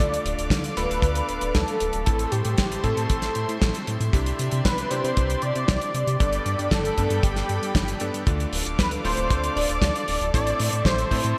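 Bright 1980s-style digital production with lush hall reverb frames this nostalgic, melodramatic italo disco excerpt at 116 BPM in D dorian, where a thick, warbling, detuned unison lead carries the melody through digital delay and shimmer reverb over reedy sustained string chords, clangy electric grand piano stabs, a glossy chorused synth bass, a dry 70s kit of hi-hat and medium-tuned snare in gated reverb, and a tight kick that sits loudest in the mix, all moving through Dm, Am, Cadd9 and Gadd9.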